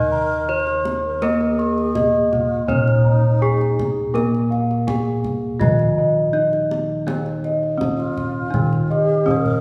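An up-front bronze metallophone with a ringing, vintage, band-limited tone carries the melody in this serene, shimmering Javanese gamelan piece at 82 BPM in Eb slendro, joined by an airy, slightly unsteady wooden-headed alto flute with vibrato on a second line, a bright horn-mallet metallophone accompaniment, round, beating bossed gongs on arpeggios and bass, and a tight, soft-handed kendang that enters at 0.7 s and plays a fill at 9.3 s, with the ensemble set in a wet hall reverb.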